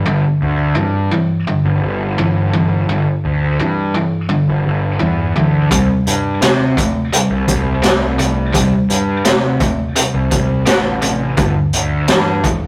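A biting, bright overdriven guitar, double-tracked and picked up front, drives this raunchy blues rock power trio excerpt with a southern rock edge, riffing over power chords that move from G5 to C5 at 5.7 seconds and back to G5 at 11.4 seconds. Underneath, a fuzz-laden picked electric bass sits just as far forward, punchy and overdriven with a direct-and-amped tone. At 5.7 seconds a raw garage drum kit kicks in on hi-hat, kick and snare, its high-tuned snare and punchy kick sounding gritty and saturated with a rolled-off top, mid-forward in a small room. The tempo is a steady, driving 85 BPM in straight 4/4. A stony room reverb and rough rehearsal-room saturation give the whole clip a loose, live grit.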